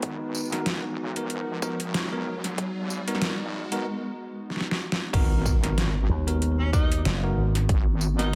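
An echo-heavy, lightly reverberant mix carries this gritty, swaggering glitch hop clip, where a warbling lo-fi pad sits in the background beneath a filter-swept, bell-like tine electric piano with dub echo, a heavy, detuned wobble bass, overdriven dubstep drums with metallic hats and a punchy electronic kick, while a riser builds to the drop and impact at 5.1 seconds, a bright slap bass through an envelope filter arrives at 6.1 seconds, and a distant, roomy tenor saxophone with vibrato enters at 6.6 seconds.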